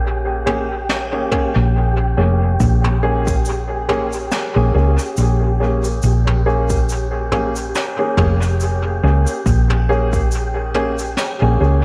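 A round, hollow-body electric bass sits up front from the very start, joined by an airy, breathy wind-like noise texture tuned to a single pitch and washed in its own reverb, in this deep, meditative ambient dub excerpt in Bb dorian at a slow 70 BPM with a gentle swing on the 16ths. At 0.5 seconds a dark, woody upright piano enters with short, mellow stabs, lightly chorused and trailed by dub echo, alongside a vintage brush kit of cabasa, snare and toms that sounds small-roomed and rolled-off at the top, also thrown into dub echo. An electronic kick arrives at 1.3 seconds, layered and tape-toned, sitting deep in the background. The whole fragment rests on a single Bbm7 chord, its slow-attack noise layer sustaining with a long release. Light reverb and a faint studio ambience give the mix a close, hushed space.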